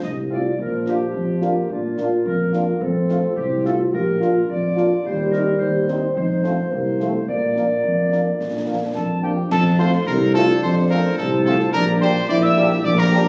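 In a straight 2/4 at 108 BPM, this festive, proud military-style march for wind band in Bb major sets a present, punchy cornet melody with vibrato over an up-front mellow tuba, woodwinds, a French horn section, a distant, roomy euphonium and background snare, bass drum and dark clash cymbals, with a pure, wooden piccolo arriving at 8.9 s, the music moving to F major at 9.5 s and a very quiet, clear trombone section holding chords from 9.8 s, all heard through a phone-in-the-room recording with club reverb and compression.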